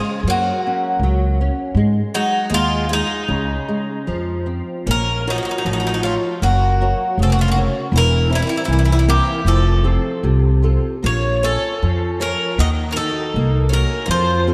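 Fingerpicked flamenco guitar, touched by analog chorus and a little finger squeak, opens this passionate, mournful fado-style ballad at a rubato 78 BPM in 2/4, with a woody pizzicato upright bass sitting up front from 0.2 s. From 0.3 s a bright, metallic Greek bouzouki carries the melody on its doubled strings through an analog delay, while a boxy, shimmering twelve-string acoustic guitar picks a swung second line in the background under subtle chorus. After a Gb-to-Dbsus2 opening, the harmony settles into Bb harmonic minor at 4.9 s, moving through Bbm, C7/E and F to Ebm, all of it soaked in a dreamy hall reverb in this excerpt from a longer piece.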